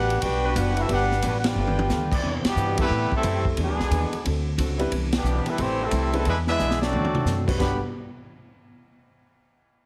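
A swung 4/4 groove drives this joyful, brassy big-band fragment, where a clear, up-front trumpet section with light vibrato carries the melody over a smooth trombone section's second line and its brief sustained chords from 0.4 s to 2.5 s, a dark, clean hollow-body electric guitar, a woody, growly pizzicato upright bass, an airy, polished drum kit with a punchy kick that adds fills while the whole band hits accents, and a vintage grand piano that joins at 2.8 s, all heard through a heavily compressed radio sound with light reverb.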